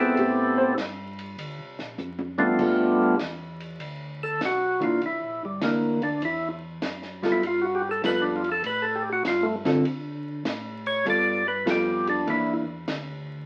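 A swung 4/4 groove at 99 BPM drives this bluesy, greasy soul jazz organ trio in G mixolydian, heard as a short fragment of a longer piece. A dark, clean hollow-body electric guitar, fingered and up front, takes a brief solo at the opening before settling into accompaniment, and a drum fill from 2.0 seconds leads into the organ's solo at 2.6 seconds. The lead tonewheel organ carries the melody with a full, percussive voice: third harmonic percussion, key click, light overdrive and a slow rotary speaker place it at the front of the mix. Beneath it, a second tonewheel organ plays the bass line in a mellow, round and dark tone, touched with overdrive, chorus vibrato and slow rotary. A compact acoustic cocktail kit keeps time with a dry, punchy kick, a high-tuned snare and dusky cymbals, while the harmony moves through G9 and C9 chords. The whole recording sounds like a very old 78 rpm record, with vinyl crackle and a short, wet studio reverb.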